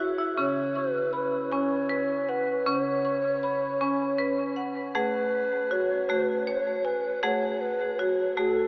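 A mellow, hollow cedar flute carries the melody up front, its airy wooden tone shaped by vibrato, soft attacks and rolled-off highs as it moves within a narrow range from A4 to C#5. This is a meditative, hypnotic world piece at a slow 53 BPM in a straight 6/8, cut from a longer work. A short marimba fill opens it before the flute enters at 0.4 seconds, and the marimba then keeps up percussive arpeggios with hard mallets, sounding vintage and band-limited as it spans C#3 to C#6. Both instruments sit forward and carry a diffuse ambient delay, while a huge, wet reverb places the music in a vast, echoing space. The whole recording has a cassette tape and AM radio character. The harmony rests on C#5 until the music shifts to a new section on A at 5.0 seconds, where it continues until the cut at 8.7 seconds.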